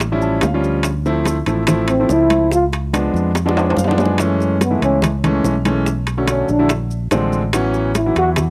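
A driving 4/4 groove at 144 BPM with a straight feel opens this sophisticated Afro-Cuban jazz excerpt, carried by tight, high-tuned bongos struck with hard hands, bright, damped congas played with soft hands, grainy maracas and ringing metal-shell timbales, all close and dry, with the bongos, congas and maracas sitting in the background. Up front, a warm fingered electric bass anchors the low end, and a clear concert grand piano, polished and present with deep bass, long sustain and audible action noise, comps through the changes and adds fills from 0.0 to 0.8 seconds and again from 3.4 to 4.2 seconds, where the drums also fill. At 1.9 seconds a dark, breathy trombone enters with a soft attack, taking the solo in an intimate, whispered jazz style that sounds distant and roomy. The harmony moves from A7b13 through Dm7 and C#7b9 before settling into F# minor at 4.2 seconds, then passes through F#m9, Bm9 and A#9 to land on A6. 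The piano and trombone carry cassette tape coloring and plate reverb, and the whole has the light-reverb feel of a home recording on cassette.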